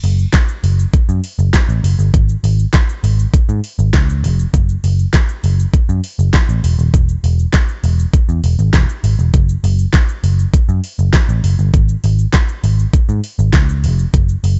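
A straight 4/4 groove at 100 BPM drives this short, bittersweet dance-pop cut in F# minor, tuned slightly sharp to A4 = 443 Hz. An electronic R&B drum kit, re-recorded in a small room, sits up front with a knocking kick, fat snare, metallic hi-hats, handclaps and shaker. Beside it, a dark, round, foam-muted picked electric bass, amped and pumping under sidechain, holds the low end from start to finish in a dry but echo-heavy mix with a dulled top.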